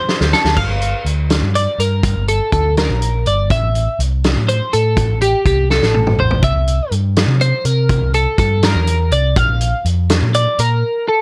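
A clean, compressed twelve-string electric guitar, shimmering with analog chorus, picks intricate arpeggios up front through a wistful math rock and midwest emo passage in 6/8 at 82 BPM, moving through Gm9, Am7, C7 and Bb. A round, amped picked electric bass sits close in the mix, while a loose indie drum kit with a punchy kick, dark cymbals and a rolled-off top opens with a fill at 0.0 seconds and adds another at 5.7 seconds. The dry, dusky production keeps this short cut from a longer piece intimate and close.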